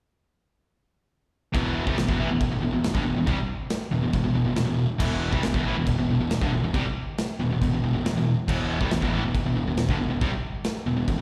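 A bright, overdriven electric guitar riff with slapback echo leads this relentless, dark heavy metal excerpt in E minor at 138 BPM, entering at 1.5 s together with a sludgy distorted guitar in the background, a growly fuzz bass, and a big rock drum kit with a punchy kick, medium-tuned snare, china and crash cymbals, all heard as a live gig through the venue's PA with recital hall reverb.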